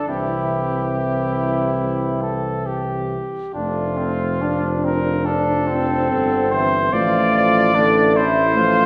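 A punchy, warm cornet carries the melody up front in this tender, hymn-like classical piece for brass band in F major, its light vibrato giving the line a singing quality. Beside it, a clear flugelhorn plays a second line, also placed forward, while a mellow euphonium supplies accompaniment in the background. A trombone with a touch of vibrato sits distant and roomy beneath them, and a tuba with a smooth top and gentle vibrato anchors the bass, both entering at 0.1 seconds. The tempo is a slow 71 BPM in 4/4, taken with rubato, and the harmony moves from C to F at 3.5 seconds. Recorded in a church or concert hall, the ensemble is wrapped in a wet recital-hall reverb, and this brief passage of about 8.9 seconds is cut from a longer work.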